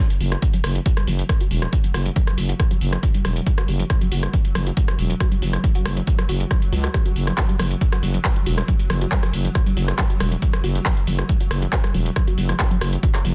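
A punchy analog kick and a thick, growling FM bass with sidechain pumping sit up front in this dark peak-time techno excerpt at 138 BPM, alongside a layered techno kit of handclaps, rim clicks and metallic hats with soft clipping on the snare, a tight, detuned sawtooth riff in the background that carries chorus, phaser, overdrive and tape echo under a filter sweep, and a swarming, tense drone that enters at 1.1 seconds, all within a dense, heavily limited modern master.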